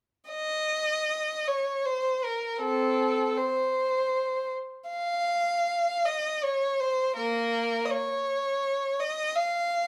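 A single bowed violin enters at 0.3 s with a mournful, yearning classical line in a freely stretched 3/4, its rich, smooth tone shaded with vibrato and set in light reverb, in a brief fragment of a longer piece that breaks off at 9.9 s.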